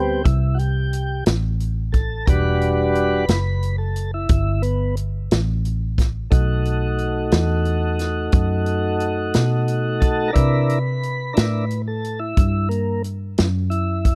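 A slow, steady 12/8 pulse sets up this brooding, mournful blues, a short passage cut from a longer piece. The tonewheel organ takes the spotlight from the first moment with sustained chords, its smooth, clean tone turning gently through a slow rotary speaker. Beneath it, a vintage muted fingered electric bass sits close and up front, its sound dark, round and foam-muted through an amp. A natural country drum kit joins at 0.3 seconds with hi-hat, a punchy kick and a medium-tuned snare, heard acoustically in its studio room. The harmony moves from Am7 to Em7, then B7 and C7. A small room ambience frames the dry, close 1970s-style studio sound.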